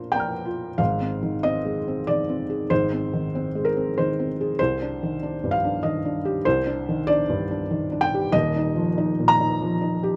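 Rubato in 3/4 at 95 BPM, this melancholic, wistful neoclassical minimalist excerpt features a solo felt-muted upright piano, soft and intimate with audible action noise and short sustain, sitting up front in light reverb as it ranges from Eb1 to F6 over chords moving from Bb through Ab and Cmadd9 to Ebsus2, tuned to A4 = 442 Hz.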